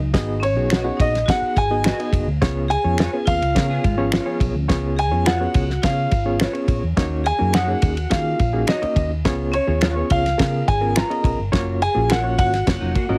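A dark, clean electric guitar riff and a round, foam-muted fingered bass open this joyful, uplifting slice of 1960s-style soul, with the guitar returning only in brief spots at 3.6 and 12.8 seconds. A barky, lightly overdriven electric piano with fast tremolo and a dry, cloth-damped drum kit with a fat snare and tight kick come in almost at once. A warm, up-front grand piano then carries the melody over a ringing hard-mallet vibraphone line, while a slightly broken-up, lo-fi guitar stab sits in the background and small-room finger snaps join in, all under a heavily compressed radio sound with light reverb.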